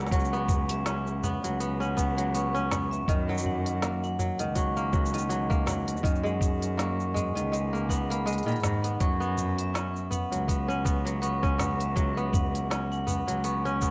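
Warm and pastoral, this folktronica passage cut from a longer piece places acoustic, fingerpicked kora arpeggios, ringing and up front, over a nasal, boxy bowed cello bass with light vibrato. A vintage, band-limited vibraphone struck with hard mallets, motor off, adds a metallic second line, with delay on both kora and vibraphone. An organic electronic kit of woody snare, crisp hi-hat, cabasa and toms, re-recorded in a small room, carries a gentle swing, while a muffled, pitched-down, thumpy sampler kick joins at 0.1 s, all inside light studio reverb over an F#sus4, D#m7 and G#madd9 progression.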